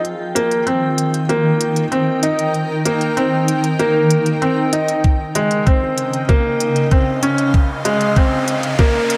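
A soft, felt-muted upright piano sits up front with an intimate, mellow riff trailed by delay, over a cloudy, evolving granular pad whose slow-attack sustained chords carry their own reverb and pump with sidechain. This luminous, tender piano and strings electronica builds throughout this cut from a longer piece: crisp electronic hi-hats re-recorded in a small room play from the start, a compressed, thumpy, pitched-down kick arrives at 5.0 seconds as the harmony moves from Eb to Dbadd9, and an electronic riser enters at 6.3 seconds. A lush hall reverb surrounds the whole, and tape warmth colours both drums.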